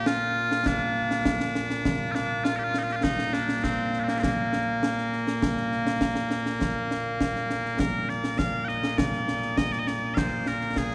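Proud and ceremonial, this cut from a longer piece of Scottish pipe music moves at a straight 101 BPM in 4/4, set in Bb major with tuning pitched to A4 = 436 Hz. Loud bagpipes carry the melody from the first moment, their tone bright and piercing, continuous and up front as they range from Bb2 to G5. A concert snare drum and concert bass drum join at 0.1 seconds, sounding acoustic, close and dry, with dark cymbals. The whole performance sits in a wet cathedral reverb with a long 4.4-second decay, captured in a church or concert hall where the top end stops at 10.8 kHz. At 7.8 seconds, the tune moves into a new section that runs to the close at 10.9 seconds.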